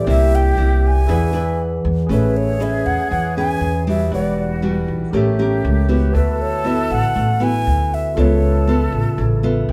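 Romantic and relaxed, this bossa nova fragment, cut from a longer piece, sets an airy, clay-toned alto ocarina on the melody over fingerpicked nylon-string guitar, dark and full-bodied, and a thumpy, woody pizzicato upright bass sitting up front. A barky, lightly overdriven tine electric piano fills out the accompaniment and slips in a short fill at 9.2 s, while a breathy concert flute with vibrato traces a second line from 0.1 s. The band sounds like it is playing live in one room, bathed in a wet, large studio reverb, as lush extended chords shift into a new section at 2.1 s.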